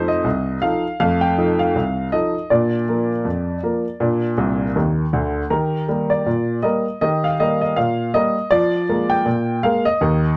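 A dark, intimate recording places a woody, slightly detuned upright piano up front in a small room, its action noise clearly audible beneath a moderate touch of reverb. This is a jaunty, lively ragtime piece in 2/4 at 80 BPM, with a swung sixteenth-note feel, cut from a longer work. The solo piano carries the whole passage, ranging from low bass notes up into the treble. A short fill arrives at 4.4 s, adding a brief flourish before the harmony moves on. The chords travel from F7 to Bb, then Eb, and settle back on Bb over F, giving the passage a natural, homespun charm.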